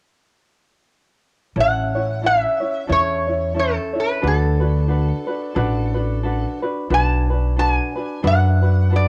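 A metal-body resonator slide guitar carries the melody up front, its bright, nasal tone picked with fingerpicks and colored by a cassette-tape grit, in this relaxed, languid Hawaiian excerpt at 90 BPM with a gentle swing in A major. A thumb-plucked tenor ukulele adds light, warm accompaniment while a woody, dark pizzicato upright bass sits forward with a touch of transformer saturation, all three entering at 1.6 seconds as the chords move from A to D6 and Bm7. The small room ambience gives it the intimate feel of a home recording on cassette.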